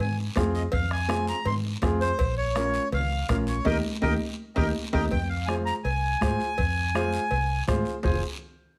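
The reedy, up-front accordion carries the melody from the very start, its smooth, slow-beating tone ranging from Bb4 up to C6 in this passionate, driving cumbia excerpt in F minor at 164 BPM. Beneath it, a dark, round, foam-muted electric bass sits up front with an amped vintage character, while a woody upright piano joins at 0.4 seconds to fill out the accompaniment. The percussion builds a busy groove: high-tuned congas struck with hard hands sound distant and damped in a large room, a raspy guiro stays close and dry, a soft-beatered bombo thumps in a live room, and ringing metal-shell cowbell and timbales sit in the background. The harmony moves from Fm to Bbm and then Eb before returning to Fm at 5.1 seconds, where a new section begins. Just before that, the band hits an accent from 3.7 seconds, capped by a drum fill leading into the change, all wrapped in a moderate studio reverb.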